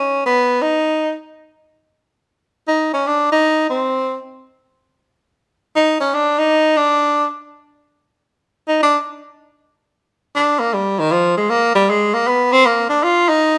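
The recording has a live, in-the-room feel, with a moderate stone-room reverb giving the sound a natural, slightly resonant space. It is a relaxed, sophisticated jazz piece, cut from a longer performance. A bright tenor saxophone carries the whole passage as a solo from 0.0 to 13.6 seconds, placed up front in the mix. Its tone has a soft attack and vibrato, moving through a compact range in an easy jazz style. The passage shifts into a new section at 9.6 seconds, giving the brief solo a sense of moving on before it ends.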